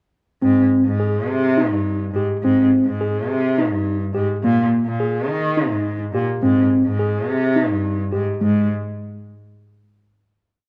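In a straight 7/8 at 210 BPM counted in eighths, this short, playful contemporary chamber piece in Ab major opens at 0.4 s with a mellow, clean tine electric piano, heard through its built-in speakers, circling an ostinato of arpeggios. Beneath it, a single bowed cello plays a rich, smooth, syncopated bass riff with vibrato, even and up front. Both parts move through Abmaj7, Bb7sus4 and back to Abmaj7 in a moderate recital hall reverb that lends a shimmering glow, before a final note rings out from 8.4 s.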